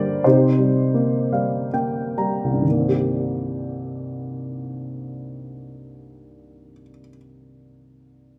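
Set in a moderate recital hall reverb with a 1.6 s decay, a warm, present baby grand piano sits up front, playing alone across its C2 to Bb5 range in this brief passage cut from a longer classical piece. The mood is bittersweet and cool, in C minor and 3/4, with a rubato feel moving between 59-97 BPM. The opening centres on a Cm7 chord and slows down, with a piano fill from 0.9 to 2.7 seconds, before a new section carries the lyrical solo through to 8.4 seconds.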